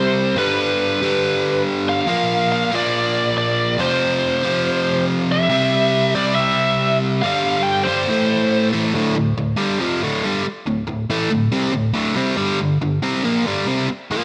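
A straight 4/4 rock pulse at 140 BPM in D minor, tuned to A4 = 441 Hz, drives this heavy section cut from a longer piece. A biting, double-tracked guitar sits up front with a low picked riff through the whole passage, while a second overdriven electric guitar carries a warm, picked melody above it until 8.7 seconds, over chords moving from G and Bb through C and Am. The riff then continues alone into a new section at 8.9 seconds opening on Dm, all framed by a moderate plate reverb and bright 1980s-style digital production.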